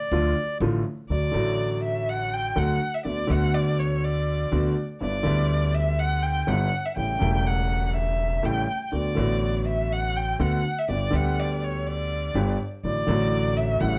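A dark production with moderate studio reverb frames this tense, passionate tango fragment in D major at 123 BPM with a rubato feel, where a reedy, bright bandoneon sounds a brief D5 opening while a smooth, vintage grand piano and a woody, thumpy pizzicato upright bass carry the accompaniment, and a single bowed violin takes an expressive solo from 1.1 seconds with vibrato and portamento over chords moving from D through Bm7/D, G6 and A7 to a closing D/A.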